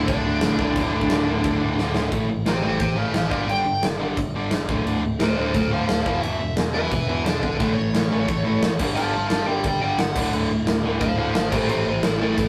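Punk rock at 176 BPM in a straight 4/4, this energetic, rowdy clip cut from a longer piece bursts in on a D5 power chord. A smooth, dark overdriven lead guitar sits up front carrying the melody from the start, and at 2.1 s it launches into a solo that runs to the end, cycling through A, G5, D5 and E5 before landing on A5. Beneath it, a bright distorted electric guitar and a very quiet hollow-body semi-hollow guitar play riffs the whole way, while a biting, double-tracked overdriven guitar drops out after the opening and returns at 7.6 s. A growly, punchy overdriven picked bass anchors the low end, and a big acoustic rock kit with a punchy kick, medium-tuned snare and bright crash cymbals hits up front, marking the shift into the solo with a fill at 1.8 s. The sound is a rough rehearsal-room recording with tube saturation and moderate studio reverb, giving the whole band a raw, live edge.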